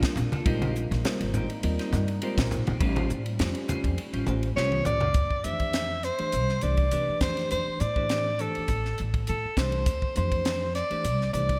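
A 102 BPM swung groove in 4/4 drives this bright, slick electric jazz fusion excerpt, with a crisp, up-front drum kit of punchy kick, high-tuned snare, hi-hat, ride and toms bathed in gated reverb, a woody, growly pizzicato upright bass, and thick-skinned, low-tuned congas sitting in the background until 5.1 seconds. Over chords moving from Bb13sus4 and A7alt to Dm9, C6, F69 and Am7, a bell-like tine electric piano plays accompaniment throughout, while a clean picked electric guitar adds stabs soaked in lush chorus and a deep, moody analog pad with chorus and phaser holds sustained chords, both dropping out after about 5 seconds. A drum fill at 4.6 seconds brings in a soprano saxophone melody, scooped and smooth with vibrato and a soft attack, up front in a bright 1980s-style digital production with a lush hall reverb.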